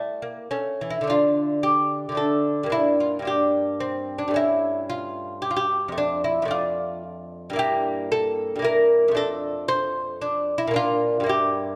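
Introspective and grave, this short excerpt from a longer piece is a baroque-style dance for solo lute in D minor, moving in 3/4 at 112 BPM with a rubato feel. The lute plays alone throughout its 11.8 seconds, fingerpicked with a delicate touch on nylon double strings, some of them octave-doubled, spanning from F2 up to C5. After a brief opening gesture over A5 and A, the main passage begins at 1.1 seconds and settles into a sombre harmonic path through Dm, Gm, A7/G, Dm/F, Edim/G and back to Dm/F before arriving on Bb. The instrument sits up front, with an acoustic, warm tone inside a moderate recital hall reverb. The overall production is dark and warm, lending the dance a contemplative gravity.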